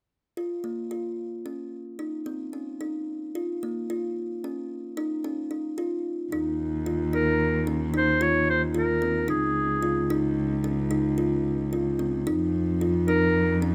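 Restless and hypnotic, this contemporary chamber music excerpt moves in 11/8 at 222 BPM (eighths) with a straight feel, opening on a woody, ringing kalimba playing arpeggios from 0.4 seconds. At 6.3 seconds a dark, bowed cello with vibrato enters on the bass line, and at 7.1 seconds a bright, soft-attacked clarinet takes up the melody in a vintage classical style. The sound is dry and close, with every part up front and the harmony moving from Ebsus2 through Bbm and Dbadd9 to a closing F5.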